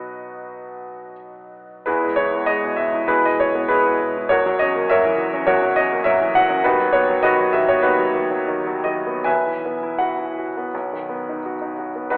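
A rubato 4/4 pulse drifts between 72 and 106 BPM in this hopeful, passionate romantic character piece for solo piano, a short passage cut from a longer work. The baby grand sits up front, clear and intimate with audible action noise and long sustain, ranging from B1 to G#5 over chords moving from B through E, F#7/E, B/D# and Bsus4 before settling back on B at 10.7 seconds. A wet recital hall reverb surrounds it, while a telephone-like filtering narrows the overall sound.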